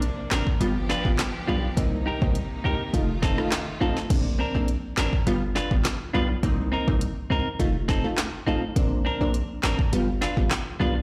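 A sultry, bouncy dancehall groove opens at once with an electronic, produced afro-pop drum kit: a deep kick, woody snare, dark hi-hats, handclaps, rim clicks and a crash, all sitting up front. Beneath it, a hard-hitting 808-style bass hits punchy and heavy, its sine tone layered with noise and saturated, with a fast attack that decays. A crisp, detuned wavetable chord stab supplies digital, triangle-based plucks shaped by a filter and a moving notch, while a clear, focused studio string section holds bowed, vibrato-laden chords that pump against the beat until 4.1 seconds. A bright, twangy clean electric guitar joins at 0.3 seconds with picked, compressed arpeggios. The harmony cycles through Bbadd9, G7, Cm7 and F7 in a light reverb, and the mix carries the character of a big sound system in a bare room, cut from a longer piece.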